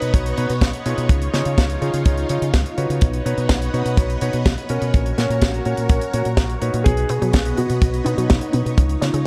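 A straight 4/4 pulse at 125 BPM drives this short, danceable italo disco cut from a longer piece, with a tight, polished kick sitting up front in a small room and a funk kit of hi-hat and medium-tuned snare sounding dry and airy around it. The fingered electric bass, run through an envelope filter, also sits up front, direct and amped, moving through Badd9, Dbadd9 and Gb/Bb under a melodramatic mood. A lush, vintage string machine holds sustained chords throughout, its slow-attack sawtooth tone thickened by a sub octave, phaser and ensemble chorus. A warm, vintage electric grand piano with a clangy low end punctuates with stabs through a digital delay until 7.1 seconds. Near the end, from 6.8 seconds, a dark, mellow baby grand piano states a brief melody with delay, while an analog pluck, round and nasal with a fast attack and short decay, adds chorused arpeggios in the background. The production is dark and warm, with light reverb and small room ambience.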